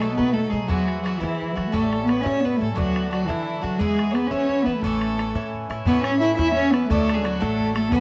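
This home cassette recording sits in a small, moderately reverberant room, with a tape tinge on the cello, fiddle and bouzouki, and captures a lively, bright Celtic jig in 6/8, cut from a longer piece. A dark, woody cello carries the melody up front with bowed vibrato, while a biting, intense fiddle with light vibrato and plate reverb plays a second line, and a metallic, double-strung Irish bouzouki picks the accompaniment. Pizzicato upright bass on steel strings gives a warm low end, and an open, boomy bodhran stays close and dry in the background, with the five parts playing throughout.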